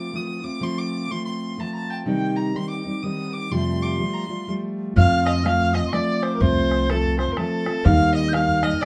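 In a swung 3/4 waltz at 124 BPM in F mixolydian, this lively, cheerful Celtic folk excerpt opens with a dark, woody fiddle carrying the melody with light vibrato over full-bodied fingerpicked steel-string acoustic guitar moving from F to Cm and Fadd9, then at 5.0 seconds an airy tin whistle with a chiffy, crisp attack adds a second line while pizzicato upright bass and a boomy bodhran set back in the background join as the harmony returns to F before turning to Eb, all in a moderate studio ambience.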